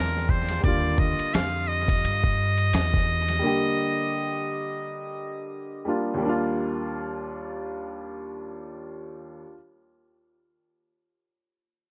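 At 86 BPM in 4/4 with a 59% swing on the sixteenths, a gritty, sampler-style drum kit sets a smooth jazz-hop groove, its thumpy kick, medium-tuned snare, hi-hat and ride cymbal running from 0.2 to 3.4 seconds. A woody pizzicato upright bass on gut strings holds the low end from the very start, stopping at 3.4 seconds. This short, smooth hip hop fragment sits in Eb major, moving from Bb7 to Ebmaj7. A buzzy, breathy trumpet with a metal mute carries the melody up front in a jazz style until 5.5 seconds, trailed by tape echo. A vintage-toned upright piano supplies the accompaniment throughout and plays alone in the closing seconds, ending at 9.6 seconds. The echo-heavy studio ambience gives the whole fragment a warm glow.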